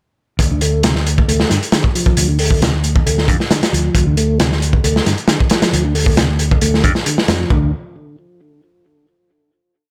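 Breakbeat with a funky, gritty mood at 135 BPM in D minor, where a crunchy, saturated breakbeat kit with a tight kick and rolled-off top sits up front beside a punchy, amped fingered bass playing a dub-style line and a clean tonewheel organ riff with key click, slow rotary speaker and delay repeating a 16-step sequence over a D minor drop from 0.4 seconds until a final note rings out at 7.5 seconds.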